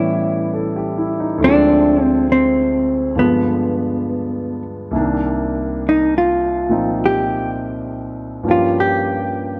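A dark, clean hollow-body electric guitar carries the melody in this intimate, smoky jazz ballad, its fingered, compressed lines sitting up front. The guitar moves from a stated theme into a solo at 4.9 seconds that runs until the clip ends at 9.6 seconds. Beneath it, a warm concert grand piano accompanies throughout, natural in tone and also close in the mix, with a deep bass register. The slow tempo carries a gentle swing on the eighth notes, and the harmony drifts through A7, Dm7b5 and G7b9 before settling on a lush Cm9 and then Gm7b5. A generous plate reverb places the performance further back in the room, giving this short section of a longer piece a late-night glow.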